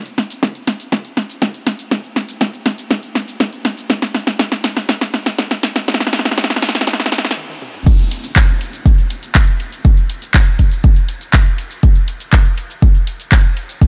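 Hopeful and expansive in mood, this house excerpt runs on a straight 4/4 pulse carried entirely by drums. A layered electronic house kit enters at 0.1 seconds with crash cymbal, handclaps, hi-hat, shaker, snare drum and toms, its punchy snare and warm hats sitting up front. Joining at 0.4 seconds, an electronic kick drum brings a deep, tape-warm thump, re-recorded in a small room and shaped with high-pass filtering on both the kick and its room sound. The opening section builds with drum fills up to a brief stop at 7.4 seconds, then the drop lands at 7.9 seconds and the groove drives on until the cut. The overall sound is dry and close, with little reverb and a high-pass filter trimming the lowest end.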